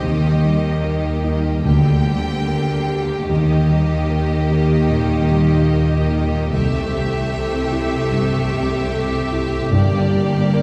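An emotional, bittersweet cinematic film score at a rubato 74 BPM opens with a clear, focused violin section carrying the melody over an intense second violin line, a mellow felt-muted upright piano with audible action noise, a smooth viola section, a very quiet ringing harp playing arpeggios, and lush bowed cellos and double basses, while soft-mallet timpani with round calf heads touch in at 1.6 and 9.7 seconds, all set back in a reverberant concert hall with vinyl crackle across this moving excerpt from a longer piece.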